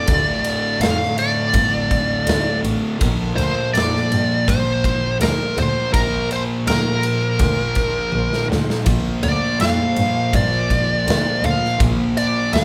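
A fuzz lead guitar with wah and distortion carries the melody up front from the opening moment, over two picked fuzz guitars grinding out a riff (the second very quiet) and a calm, organ-like drone with ring modulation and chorus holding very quiet sustained chords. This ominous, brooding stoner and doom metal cut moves at 82 BPM in 4/4, shifting from Dm to Bb. It is anchored by a dark, bowed double bass with overdrive, vibrato and portamento, and a big acoustic rock kit with a punchy kick, bright cymbals and toms that lands a drum fill at 8.1 seconds, the whole band playing live in one large, reverberant studio room.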